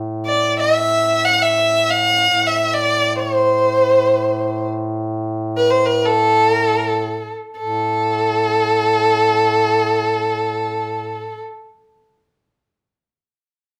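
Longing and melancholic, this brief Turkish passage, cut from a longer piece, unfolds in free time within makam huseyni, tuned slightly below standard pitch. A mellow duduk holds a low drone from the very start, its folk-style playing marked by scooped notes and sitting well back in the balance. A bowed violin enters almost at once and carries the melody up front, a single player whose rich, focused tone is shaded with vibrato and a smooth top end. The line moves in the upper register, and the pace slows between 2.8 and 7.6 seconds before the music shifts into a new section that runs until about 10.6 seconds. The two musicians play together in one room, wrapped in a wet studio reverb that lends the intimate performance a soft sense of space.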